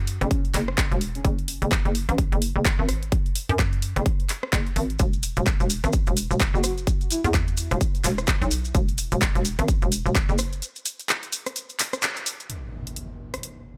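A hollow, knocking FM bass with tube saturation and sidechain pumping drives this aggressive, swaggering bass house cut at 128 BPM in F# minor with swung 16ths, backed by a punchy overdriven kick and an up-front big-room kit of handclaps, hi-hat and rim click, while brief breathy, flute-like synth lead phrases carry subtle chorus and delay, grainy maracas sit in the background from 5.0 seconds, a break arrives at 10.6 seconds, and an electronic impact closes from 12.5 seconds in a digital ambience.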